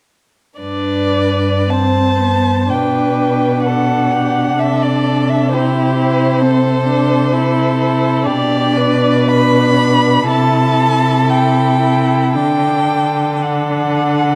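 Heard through a wet recital-hall reverb, this serene, lyrical excerpt of a slow romantic string quartet movement unfolds in a flexible rubato 4/4, with an up-front first violin singing a smooth melody full of vibrato and portamento above a second violin's supporting line, a soft-attacked viola accompaniment and an even, up-front cello bass, all bowed by single players from 0.6 to 14.4 seconds as the harmony moves from G to a closing D.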